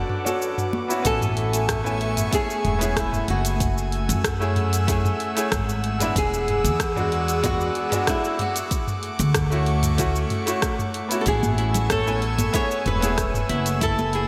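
A relaxed, straight 4/4 groove at 94 BPM carries this wistful sunset chillout piece, cut from a longer work, with a smooth, tape-warm R&B kit of cabasa, hi-hat, rim click and toms joined at 1.1 seconds by a deep, layered electronic kick. Woody, thumpy upright bass on gut strings sits up front from that point, while hard-handed congas, close and dry, surface briefly at the start and return near the end in the background. A brilliant concert grand piano with deep lows and a diffuse ambient delay supplies the accompaniment beside an airy, breathy pad of detuned sawtooth and noise layers, slow to bloom and long to fade, shimmering with chorus. From 1.1 seconds a bright, fingerpicked flamenco guitar carries the melody, finger squeaks audible, touched by subtle chorus and a diffuse ambient delay, over chords moving from Bm7 to Amaj7, F#m9, E9 and Dmaj7. At 11.3 seconds a dark, slightly broken-up electric guitar adds picked arpeggios in the background, and the whole mix is soaked in a lush, dreamy hall reverb.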